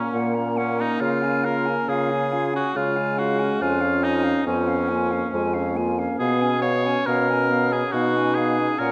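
A slow, romantic movement for wind quintet opens with all five players sounding together from the very start. It sets a lyrical, serene mood at 69 BPM in 3/4, with a rubato feel and tuning at A4 = 441 Hz. The hollow, pure-toned concert flute carries the melody high above with vibrato and tongued notes, while the punchy oboe sits up front on the second line with light vibrato. Beneath them, the clear clarinet stays in the background and the mellow French horn, with its soft attack, fills in the accompaniment. The bassoon anchors the bass up front, its smooth top and light vibrato giving the low end a gentle glow. The harmony moves from F#/A# to C#, then C#/E#, and reaches C#7/B at 6.2 seconds, all bathed in a wet scoring-stage reverb in this passage cut from a longer piece.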